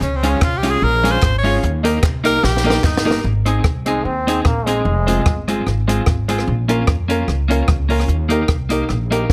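A bright, punchy tenor saxophone solo with slapback echo opens this upbeat, bouncy ska excerpt at 149 BPM in Ab major, over woody pizzicato upright bass, a dry cocktail drum kit with a high-tuned snare, clean picked electric guitar, slightly detuned vintage upright piano stabs and crisp group handclaps in the background. A drum fill carries the saxophone solo to its end at 3.2 s, and from 3.9 s a brilliant trombone with light vibrato briefly takes the melody as the chords move through Ab, Fm, Bbm and Eb. Light reverb surrounds the lightly swung groove.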